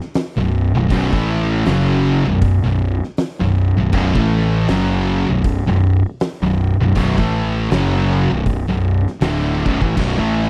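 A bright, double-tracked high-gain guitar cuts through this sludgy, heavy stoner and doom metal excerpt in B minor, riffing from 0.4 seconds over a pair of dark, picked fuzz guitars sitting in the background and a growly, overdriven fingered bass with tube saturation. An oversized low-tuned drum kit opens at 0.0 seconds with crash, hi-hat, fat snare and punchy kick, its tone smooth and gritty with a rolled-off top, setting a slow 79 BPM swung 4/4 groove that stays on a single Bm chord. The mix is dry and close, in the manner of a 1970s studio recording.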